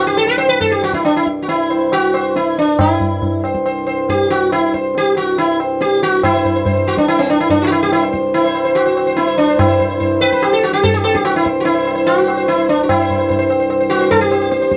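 The recording has a dry, close sound in the manner of a 1970s studio, and this short cut from a longer Hindustani classical performance feels radiant and meditative. A bright, plectrum-plucked sitar sits up front and carries the melody, its buzzing tone and sympathetic strings giving a shimmering halo to each phrase. Beneath it, a hand-pumped harmonium holds a low drone that sounds reedy, breathing and vintage, with a band-limited character. The tabla joins at 0.2 s, low-tuned and ringing, with the acoustic air of a small room. The music moves into a new section at 6.2 s and steadily gathers pace throughout the passage, giving the radiant, meditative mood a growing sense of momentum.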